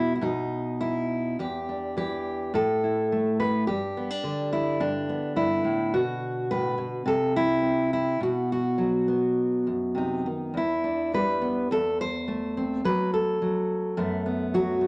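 Melancholic and reflective, this short cut from a longer solo folk piece in E minor features a full-bodied, up-front fingerpicked steel-string dreadnought acoustic guitar with audible finger squeak, played rubato around 105 BPM in 4/4 across a range of E2 to C5, moving from Em7 at 1.4 seconds through A5, G5 and B5 before landing on F#madd11 at 14.0 seconds, framed by a moderate studio reverb.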